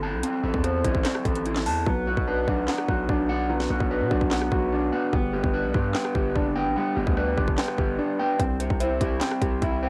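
A slightly broken-up electric guitar opens this short, melancholic trap cut with dark, fingered arpeggios through cassette-tape grit and analog delay, over a heavy, saturated 808-style bass with a fast attack and a noisy, aggressive edge, all at a half-time 147 BPM in B phrygian. A mellow concert grand piano with a deep low end joins at 1.9 seconds. Meanwhile the up-front trap kit's hard-clipped kick, sharp snare, rim clicks and handclaps carry on with the metallic hi-hats held back, until the drums drop out from 8.0 to 8.4 seconds as the chords move from G to C in the dim, close booth sound of a home cassette recording.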